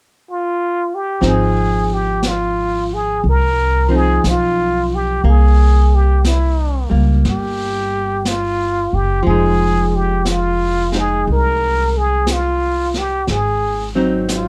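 This jazz ballad excerpt moves at a slow 60 BPM in 4/4 with a lazy swing, its intimate, romantic mood set in Ab major. A trumpet with plunger mute carries the melody from 0.3 seconds, playing solo at first with a breathy, whispered tone, soft attack and gentle vibrato, its wah-wah colour sitting up front in the mix. At 1.2 seconds the rest of the band enters together. The pizzicato upright bass is woody and thumpy and sits close, while a miked hollow-body archtop guitar adds clean, picked accompaniment with a hollow, dark character. A vintage brush drum kit sounds distant and roomy, with brushed snare and hi-hat. The dark production, light reverb and a harmony moving from Ab6 through Fm7 to Ab7 give the piece a late-night glow.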